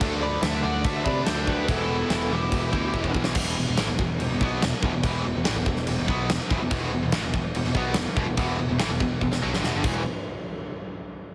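A straight, driving 4/4 pulse anchors this menacing hard rock cut, taken from a longer piece, with a huge arena drum kit up front: punchy kick, medium-tuned snare, bright crashing cymbals and a pumping hall sound, plus a couple of drum fills. A picked electric bass growls underneath, direct and amped, while a pair of overdriven electric guitars churn out the riff, one sitting in the background and a double-tracked one very quiet in the mix. A very quiet cranked stack guitar also plays the riff, dropping out at 3.4 seconds and returning at 6.7 seconds. Over the opening, until 3.1 seconds, a bluesy, dark lead guitar with distortion and slapback echo carries the melody, joined in the background by an octave-fuzz lead playing a second line. The whole mix sits in a moderate echo chamber and is squeezed into a heavily compressed, radio-ready sound.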